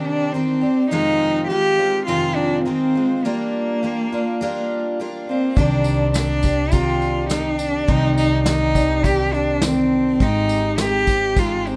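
This reflective, melancholic acoustic folk excerpt in C minor opens with a bowed cello carrying the melody up front, its soft attack, vibrato and portamento giving it an expressive, close voice. Beside it, a picked twelve-string acoustic guitar supplies bright, shimmering, octave-doubled accompaniment with a jumbo body and audible finger squeak. At 5.6 seconds the band fills out as a woody pizzicato upright bass, a soft brush drum kit with a punchy kick and medium-tuned snare, and a jingly tambourine set in the background all enter together. The piece moves at 103 BPM in a straight 4/4, with the harmony shifting from Cmadd9 through Fm7 and Gm7 before returning to Cmadd9 and landing on Abmaj7 at 10.2 seconds. Light reverb sits over the mix, while the drums carry a natural small-room sound.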